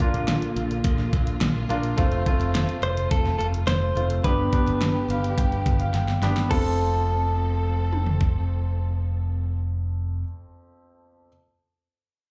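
A hopeful, anthemic piano-driven pop passage in F major at 106 BPM opens with a brilliant concert grand, a clean, compressed electric guitar carrying the melody, lush bowed strings set distant in the mix, and an up-front electronic drum kit with a knocking kick and fat snare, joined almost at once by a growly picked electric bass. Slapback echo colors the piano and guitar. The grand plays a fill from 4.8 seconds and the drums add their own fill at 5.9 seconds, leading into a new section as the chords move from Bb through F and G back to F. Cut from a longer piece, it sounds like a live club gig heard through the venue's PA, with light reverb.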